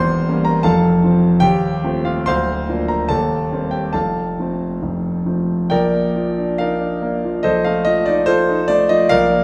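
Lyrical and hopeful, this romantic character piece for solo piano moves in a flexible, rubato 2/4, cut from a longer work. A warm concert grand sits up front with a natural tone and deep bass, spanning D1 to C6 and bathed in the wet reverb of a recital hall. It opens on an Edim7 chord before settling through F and Bb harmonies, and a new section arrives at 5.7 seconds on Bb, ending on F7/Bb at 7.4 seconds.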